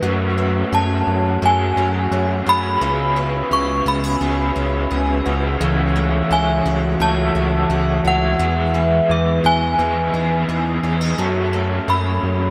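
Ethereal, floating dream pop at 86 BPM in 4/4, cut from a longer piece, where a fat, detuned sawtooth analog bass sits up front under a raw, overdriven garage guitar with tremolo, lush chorus and dub echo, a mellow, flute-like tonewheel organ holding sustained chords with chorus vibrato and key click, a shimmering, octave-doubled twelve-string acoustic guitar picking arpeggios, a delicate bell-like celesta in the background from 0.4 seconds, and an inharmonic FM synth chime carrying the melody from 0.7 seconds through ensemble chorus, phaser and dub echo, all moving through F#madd9, C#m7, A6/C#, Emaj7 and F#m in an echo-heavy mix with moderate spring reverb.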